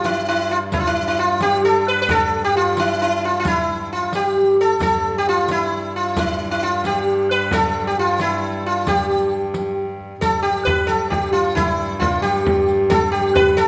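A bright, buzzing sitar carries the melody up front, its plucked line shimmering with sympathetic strings between E4 and B4 in this festive, ancient-sounding medieval dance in 6/8 at 89 BPM, set in G mixolydian. Beneath it a single viola da gamba holds a pure, floating drone on G2 with light vibrato and an airy bow, while a deep, large frame drum played with soft hands sits close and a compressed, saturated riq jingles in the background. A moderate recital hall reverb surrounds the ensemble, and the dance moves into a new section at 10.2 s before this cut from a longer piece ends at 13.7 s.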